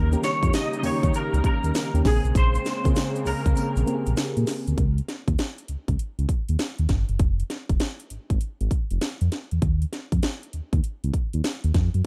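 A swung sixteenth-note groove at 99 BPM in 4/4 drives this confident, slick new jack swing cut from a longer piece, with a house drum kit of punchy kick, cracking snare, metallic hats and tambourine sitting up front beside a smooth, evolving sawtooth synth bass that runs the full 12 seconds. Over chords moving from Eb7 to Bbm9, a clean, twangy electric guitar with ensemble chorus carries the melody until 4.1 s, while a round, chorused FM electric piano, veiled con sordino strings in the background and a very quiet, grainy tube shaker fill out the opening before a break at 3.6 s. From 4.8 s, the drums and bass carry on alone through Dbsus2 and Fm, all set in dark digital ambience.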